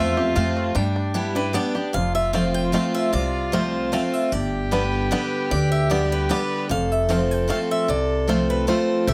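Virtuosic and lively, this bluegrass passage, cut from a longer piece, moves at 151 BPM in a straight 3/4 and shifts between F and G chords. A picked swing-style acoustic guitar carries the melody high in its range with a bright, boxy tone and audible finger squeak, while a twangy, percussive banjo played with fingerpicks shares the lead from the background before dropping out at 8.8 seconds. A dark fiddle bowed by one player adds a woody second line with light vibrato, sitting close in the sound. Up front, a picked dreadnought steel-string guitar supplies full-bodied accompaniment with fresh strings, and a thumpy pizzicato upright bass on gut strings anchors the low end. Close, detailed microphones and light reverb keep the small acoustic ensemble intimate and clear.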